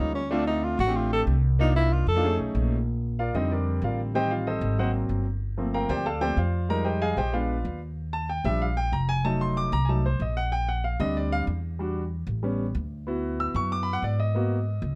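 Over a straight, danceable 4/4 pulse, this lively Afro-Cuban jazz excerpt opens with a breathy, mellow tenor saxophone solo of vibrato and scooped notes that ends at 2.4 seconds, before the natural, deep-bodied concert grand piano takes its own solo from 2.9 seconds through rich extended chords, all carried by a woody, pizzicato upright bass in a dark, lightly reverberant, warm production.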